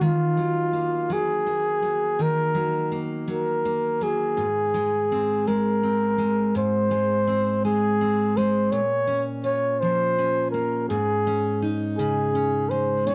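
Pop in a swaying 6/8, this short fragment of a longer piece carries a romantic, gently rocking mood. A mellow flugelhorn plays the melody as a solo voice up front throughout, in a jazz style with light vibrato, a soft attack and scooped notes. Beneath it, a picked steel-string acoustic guitar with a bright, full-bodied jumbo tone supplies the accompaniment, sitting just as close to the listener. The harmony moves from Ebmadd9 to Ab, then turns toward a new section at 8.7 s over Bbm and Absus4. The sound is a dry, close recording in a 1970s studio style, touched with light reverb and a bit of room ambience.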